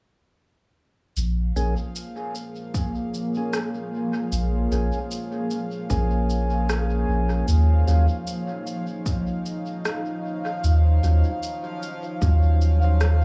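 Meditative and deep, this ambient dub excerpt rests on a round, up-front sub bass under a dark, detuned sawtooth pad with chorus and reverb, while a bubbling, resonant stepped-filter texture drifts beside mellow tonewheel organ stabs through slow rotary speaker and dub echo, a tape-warm electronic shaker and rim click carry dub echo, and an overdriven electronic kick enters at 2.7 seconds, all moving from Bbm7 to Ebm9 in an echo-heavy mix.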